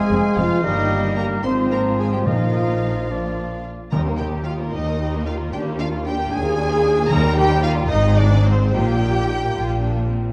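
Lively and spirited, this classical-period orchestral passage in 6/8 sets an expressive, vibrato-laden violin section on the melody over lush viola accompaniment, a focused second violin line in the background, and rich cello and double bass sections, while an airy flute, a distant oboe, a bright clarinet, a punchy bassoon and a mellow horn section color only the first few seconds, soft-malleted timpani enter at 2.3 seconds, and a moderate scoring-stage reverb surrounds the dark, warm ensemble.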